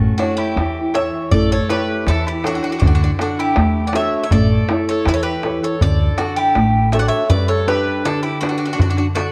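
Heard through worn, warbling cassette tape with a drifting pitch and a moderate plate reverb, this sunny Greek folk excerpt moves at 80 BPM in 2/4 in D major, cycling between A and D before turning to G near 7.3 s. Up front, a bright, metallic Greek bouzouki with some octave-doubled strings picks the melody, while a woody mandolin adds a second line and a small fingerpicked nylon-string guitar carries the accompaniment. A thumpy pizzicato upright bass plays until 7.1 s, and a deep, saturated clay-shell darbuka played with soft hands keeps the pulse throughout.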